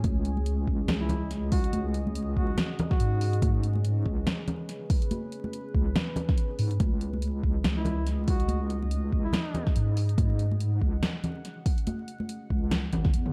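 A heavy, saturated wobble bass sits up front in this brooding, meditative deep dubstep excerpt in C# minor at 142 BPM, with a half-time, swung feel over a sustained C#sus2 chord. An up-front layered electronic kick, a punchy snare with hi-hat and toms from a small-room deep house kit, and ringing, close, dry congas drive the groove beneath a deep, moody detuned sawtooth pad bathed in chorus and reverb. A close-miked duduk with vibrato and scooped notes drifts in from 1.0 s in short folk-style phrases with dub echo, all wrapped in dark production with vinyl crackle and light digital ambience before a break at 13.1 s.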